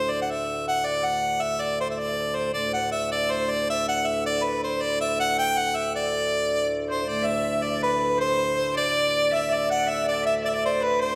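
Heard from further back in a reverberant recital hall, this short cut from a longer medieval dance has an ancient, rustic air and a straight 6/8 feel. A warm harmonica carries the melody up front as the soloist, its punchy, pop-style phrasing coloured by vibrato and scooped notes. Beneath it, a pedal harmonium holds a low drone throughout, reedy and mellow with a breathing quality and a boxy, small-room character of its own. At 6.9 seconds, a single bowed fiddle joins in the background with a rich, earthy second line touched by light vibrato. A very quiet fingerpicked concert harp enters at the same moment with its own ringing acoustic second line, just before the same dance strain begins again.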